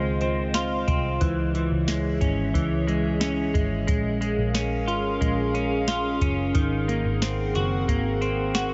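A warbling, detuned tape-like pad holds slow-blooming sustained chords through chorus, phaser and its own reverb to open this ethereal, blissful dream pop excerpt in Db major at 90 BPM, joined from the start by clean, up-front semi-hollow guitar arpeggios bathed in analog chorus and tape echo and a dark, round, foam-muted picked bass, before a soft vintage rhythm box with a deep kick, crisp snare and metallic hats enters at 0.2 s, the harmony drifting through Dbmaj9, Dbm, Bbm7 and Ab9 inside a huge ambient reverb with a softened top end.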